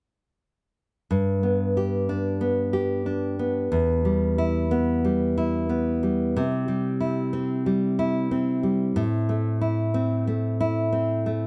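Close, detailed microphones and a light reverb frame this short pop excerpt. A lone nylon-string guitar plays accompaniment from 1.1 to 11.5 seconds, fingerpicked and up front, with fresh strings and a full-bodied, deep classical tone. The mood is carefree and sunny, moving at 92 BPM in a straight 4/4 in G major, tuned to A4 = 436 Hz. The chords pass from G to Em, then C, then Am, and the guitar spans E2 to G4. It is cut from a longer piece.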